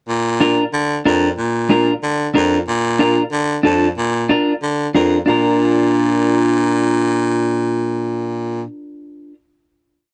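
A raspy, close-miked baritone saxophone opens the piece at 0.1 seconds, punching out a gritty cumbia bass figure up front, and a clean, twangy electric guitar joins almost at once with compressed, picked triad chords. Together they build a festive, sunny Latin groove in a straight four, set in a dark production with little reverb. At 5.3 seconds the groove gives way to a final chord, and the guitar is the last to sound, ringing until 9.3 seconds.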